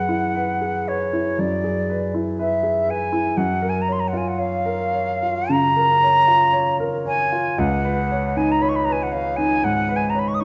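The recording has a dark, warm production, set in a moderate scoring-stage reverb with a 1.5-second decay. It is a short impressionist classical passage for flute and grand piano, wistful and mysterious, moving in a rubato 4/4 that breathes freely. The silver concert flute carries the melody from 0.0 to 10.4 seconds, its airy, metallic tone shaded with vibrato and tongued articulation and sitting up front in the mix. The grand piano accompanies for the same span from its low bass register up into the treble, with a natural, close presence. Its harmony drifts through colored chords, Eadd9/F#, then Gbmaj7 at 3.4 seconds and Dbsus2 at 7.6 seconds, leaving the cut from a longer piece suspended and unresolved.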